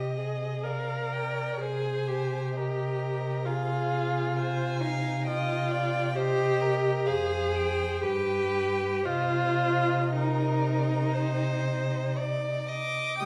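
A reverberant recital hall lends this passage from a longer classical work a soft halo, with the viola and cello sitting up front. In a slow, yearning and solemn romantic movement for string quartet with a rubato feel, the first violin sings the high melody with vibrato, gentle attacks and expressive portamento while the second violin carries a supporting line beneath it. The viola supplies smooth, even accompaniment and the cello anchors the bass with its own vibrato and sliding, tender phrasing as the harmony settles back on C minor at 9.1 seconds.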